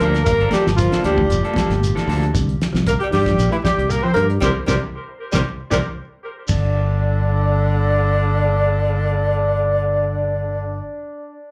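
A driving, funky afrobeat groove in straight 4/4 at 115 BPM, this short cut from a longer piece sits in G dorian and moves from Gm9 to C7 before settling on G5 when the second section arrives at 6.5 s. A damped 70s drum kit with a fat snare and tight kick drives the opening alongside a grainy shekere and briefly a high-tuned, thin-skinned conga set deep in the background, while an up-front, growly fingered electric bass runs the whole way through. A clean electric guitar plays chorus-washed arpeggios in the background, and a twangy guitar at the edge of break-up adds stabs only in the first couple of seconds. The horn section carries the melody, roomy yet up front, with a raspy, close-miked tenor saxophone beneath it on a second line full of vibrato and scooped notes. A band accent and a drum fill lead into the last stretch, where drums, percussion and guitar drop out, leaving horns, sax and bass over the club ambience of a live gig heard through the venue's PA.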